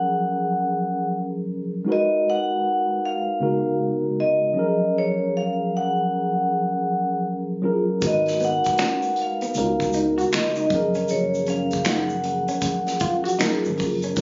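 A relaxed swung sixteenth-note groove in 4/4 underpins this late-night, sultry neo-soul and R&B fragment, cut from a longer piece. A ringing, metallic vibraphone struck with medium hard mallets carries the melody up front with a slow motor vibrato and a slapback echo, while a mellow, clean tine electric piano sits beside it, laying down lush chords that move from F#maj9 through G#m9 and C#13sus4. At 8.0 seconds the rhythm section arrives: an unplugged acoustic drum kit played with bundle sticks, with a punchy kick, medium-tuned snare, hi-hat and finger snaps, joined by a rubbery, bouncy square-wave bass with a nasal, resonant filter pluck, and an egg shaker with group handclaps tucked compressed and saturated in the background. Just after, at 8.4 seconds, a dark, picked vintage hollow-body jazz guitar adds a clean second line in its middle register. Light reverb and a studio ambience give the mix an intimate room feel, and the compressed, phone-in-the-room recording has its top end rolled off, lending a muffled, lo-fi haze.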